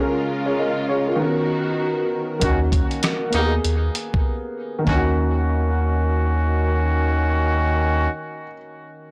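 A dark, worn upright piano with audible action noise and cassette-tape grit opens this reflective, moody boom-bap hip-hop excerpt in Eb minor at 98 BPM with a swung 16th feel, alongside lush, bowed studio strings that sustain chords until 2.4 seconds, when tight vintage horn stabs with delay, a round, deep analog bass, and a gritty, thumpy sampler-style soul drum kit of kick, snare, rim click and hi-hat arrive, the drums dropping out at 5.0 seconds, all within a blown-out, overdriven recording and small-room ambience.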